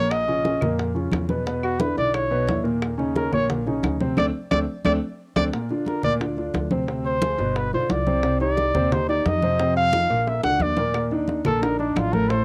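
Recorded at home on cassette in a snug booth, this sultry, sophisticated slice of Afro-Cuban jazz moves at 177 BPM in a straight 4/4, with a mellow, punchy trumpet soloing up front throughout in a forceful jazz style full of scooped notes. An intimate grand piano with audible action noise comps alongside it over shifting harmony from Bbm through Dm7b5, G7 and Cmadd9, while a woody pizzicato upright bass anchors the low end. Ringing, close congas and tight, high-tuned bongos sit beneath, with claves clicking in the background until 5.4 seconds and returning at 10.9 seconds, and a band accent and drum fill mark the turn into the repeated section at 5.5 seconds.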